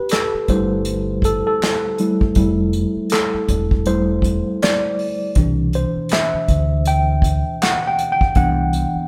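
A relaxed 80 BPM groove in 4/4 with a lightly swung sixteenth-note feel sets up this smooth neo-soul R&B excerpt, built on an acoustic drum kit played with bundle sticks, mixing handclaps, hi-hat, a punchy kick and a medium-tuned snare with an airy, polished small-room sound. A worn, slightly out-of-tune tine electric piano sits up front and takes the lead, moving from a rootless Fmaj9 to Cmaj9 at 5.4 seconds in F lydian, while a dark, round fingered dub bass anchors the low end. The band plays together in one stone room with moderate reverb, giving the mellow performance a live, intimate character.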